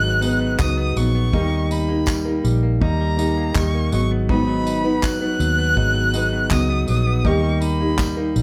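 A steady, straight 4/4 pulse at 81 BPM underpins this short cut from a wistful, tender acoustic pop piece in G# minor, with a drum kit played with bundle sticks entering at 0.2 seconds to add a dark, tight kick, handclaps and tambourine. A round, foam-muted electric bass sits up front and punchy beneath a fingerpicked steel-string acoustic guitar, while a gritty, overdriven reed electric piano heard through a combo amp fills in the harmony. A clean, twangy electric guitar recorded direct adds compressed picked arpeggios, and a separate jingly tambourine joins at 0.6 seconds, distant in a large room in the background. Above it all, a single bowed violin carries the melody high in its range with expressive vibrato and portamento and a smooth top. The harmony moves between G#m7 and D#, and light reverb gives the parts a gentle sense of space.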